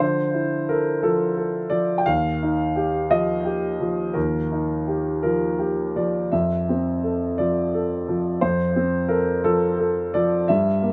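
Melancholic and reflective, this brief neoclassical minimalist piano excerpt drifts in rubato 6/8 at 58 BPM, tuned to A4 = 443 Hz, as a solo concert grand with deep bass, a boxy, up-front tone and long sustain moves from Dmadd9 to Ebadd9 at 2.1 seconds and settles on Fmaj7 at 6.3 seconds beneath light reverb.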